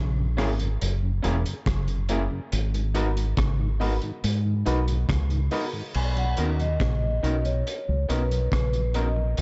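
A crunchy, gritty breakbeat kit sets a straight, unhurried 70 BPM groove in 4/4, with a tight kick, rim clicks, hi-hat and subdued crash under a deep, round fingered bass that sits up front in this sweet, romantic lovers rock reggae excerpt in B major. A very quiet tonewheel organ with slow rotary shimmer, a clear grand piano in the background and slightly broken-up, lo-fi guitar stabs fill out the harmony as it moves from F#7 to G#m7 and settles on Bmaj7. At 6.0 s a soft-mallet vibraphone enters with an airy, ringing melody, its slow motor vibrato trailed by tape echo, all wrapped in a dark, cosy small-room sound.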